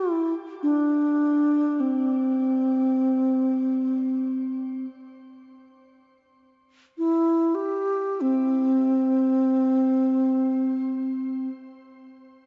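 Unfolding in free time, this calm, spacious fragment of meditative world music sets a wooden-headed alto flute up front, its airy, straight, tongued tone carrying the melody between C4 and G4 through a shimmer reverb until 11.5 seconds. Barely audible tubular bells, struck with a rawhide hammer, add a solemn, metallic ring beneath it for the first 3.9 seconds. A wet concert hall reverb with a 2.2-second decay surrounds the parts, with the tuning set at A4 = 439 Hz and the high end cut off above 7.7 kHz.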